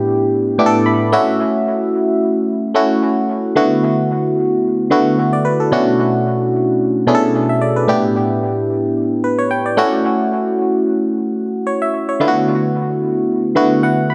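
Swung sixteenths in four drive this late-night, hypnotic amapiano fragment, carried entirely by a biting, barking FM electric piano with a percussive, fast attack and a decaying tone, a noisy edge, chorus and analog delay, sitting up front in an echo-heavy, lightly reverberant mix with dulled highs as it cycles through A9sus4, F#m7, D6 and Bm11 and drops in brief fills at 0.3, 9.2 and 13.6 seconds.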